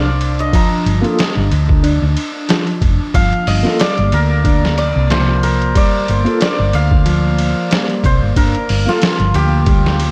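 A bright, shimmering hammered dulcimer carries the melody from the first moment, its ringing notes trailing a dub echo over a warbling, lo-fi pad that holds sustained chords in the background with chorus and its own reverb. This smoky, melancholic trip hop excerpt moves at 92 BPM in 4/4 with a swung sixteenth feel, resting on a single G minor seventh chord. A round, dark hollow-body electric bass sits up front with tube saturation, while a clean, fingered electric guitar plays arpeggios through digital delay further back in the mix. From 0.2 seconds a sampler-style drum kit enters, compressed, pitched down and muffled, with a thumpy kick, medium-tuned snare, hi-hat and ride giving it a tape-softened, small-room character. Between 1.0 and 9.0 seconds a felt-muted upright piano adds intimate, vintage-toned accompaniment with tremolo, and a light reverb ties the whole piece together.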